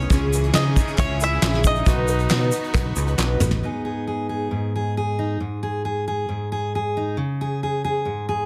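A dense, heavily limited mix with light reverb carries this nostalgic indie folk excerpt at 136 BPM, as a twangy bluegrass banjo melody over a mellow trumpet line, a shimmering twelve-string acoustic guitar, bright bowed strings, dark upright piano arpeggios, a growly up-front electric bass, a grainy tube shaker, a soft brush kit with a fat snare and hollow group handclaps fill the opening over C#m and B, until a drum fill at 3.2 s leads to a full-bodied fingerpicked steel-string acoustic guitar playing alone from 3.6 s over G#m.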